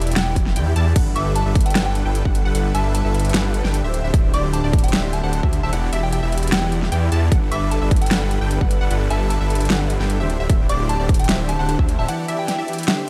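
A punchy, overdriven electronic kick sits up front in this lush, bright future bass excerpt, which moves at 151 BPM in 4/4 with a half-time feel in G major, cut from a longer piece. Beneath it, a thick, detuned saw bass with chorus and sidechain pumping anchors the low end, while huge supersaw chords carry the riff through a cycle of Em9, Gmaj7 and D9sus4. A big-room dance kit adds a massive snare, metallic hats and crash cymbal, both drum parts sharing overdrive and a small room reverb. Set in the background, a soft, pure FM bell carries the melody from 0.2 seconds with tape echo, alongside a wave-folded unison pluck playing arpeggios through delay and a filter sweep, and a very quiet bowed string section holding vibrato-laden chords. The mix has a dark, digital ambience, and the bass drops out at 12.1 seconds for a short break back on Em9.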